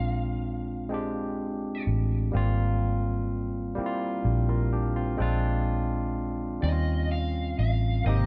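A slow 6/8 pulse at 42 BPM, counted in dotted quarters with a straight feel, carries this intimate, warm R&B excerpt in Ab lydian. A round, foam-muted fingered electric bass sits up front for the full length, joined by a barky tine electric piano, lightly overdriven through a combo amp, that supplies bright accompaniment throughout. An overdriven, lo-fi lead guitar through a small cranked amp picks a short melody in a high register at the start, falls silent, and returns at 6.6 seconds. The harmony moves from Bb7 to Abmaj13, back to Bb7, and lands on Eb13. A very quiet, hollow, flute-like pad with ensemble chorus slips in only at 8.0 seconds, just before this excerpt, cut from a longer piece, ends, and light reverb frames the dark, warm production.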